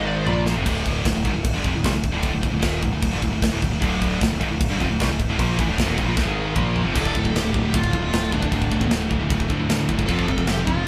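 A straight, driving 4/4 pulse from a polished, up-front studio drum kit with a tight kick carries this relentless, epic heavy metal excerpt, where a bright overdriven electric guitar and a pair of scooped high-gain rhythm guitars (one double-tracked and very quiet, returning at 3.8 s) churn riffs alongside a growling picked bass, a drum fill at 6.2 s ushers in a new section, and a distorted lead guitar with digital delay takes the melody from 6.9 s, all set in a live-room sound with moderate reverb.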